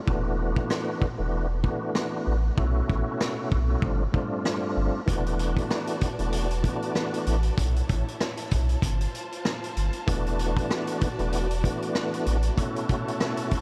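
A dark, tough boom-bap hip-hop groove at 96 BPM in E dorian opens with a gritty, saturated vintage drum kit of kick, snare, rim click and hi-hat swung at 55% on 16ths, a deep, round sine sub bass and a clear tonewheel organ with key click, fast rotary speaker and cassette tape colour over E9sus4, B9sus4 and G9sus4 chords, before a lush, bowed string section enters low in the mix at 5.1 seconds, the whole heard in a small room with light reverb.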